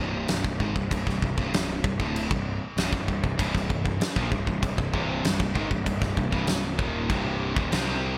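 The recording has a crisp 1980s-style digital sheen, with light reverb and a small-room ambience around the players. This menacing, aggressive hard rock excerpt moves at 97 BPM in a straight 4/4, sitting in C minor on a Cm chord, with the tuning set to A4 = 438 Hz. A distorted, compressed electric guitar plays a riff from the start, set back in the mix, while a fuzz-laden picked bass growls underneath with overdrive. At 0.3 seconds a huge arena drum kit arrives up front, with a fat snare, a punchy kick and crash cymbal ringing in a natural big-room sound. At 3.4 seconds a cranked stack guitar joins with a second overdriven riff, touched with subtle chorus and also kept in the background, as the fragment drives on to 8.2 seconds.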